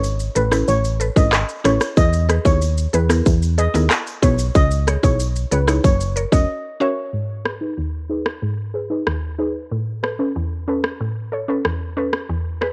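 Hypnotic and bouncy, this dancehall clip sets a mellow, shimmering steel pan melody with tape echo over a punchy, round FM bass, an overdriven electronic drum kit with sampler grit, tight kick, metallic hats, handclaps, rim click and shaker, a faint tube shaker in the background, and a woody, chorused synth pluck that pumps with sidechain ducking; the bass and tube shaker stop at 6.5 seconds for a short break, after which a filter sweep on the pluck carries the second half from 7.1 seconds, captured as a cassette home recording with light reverb.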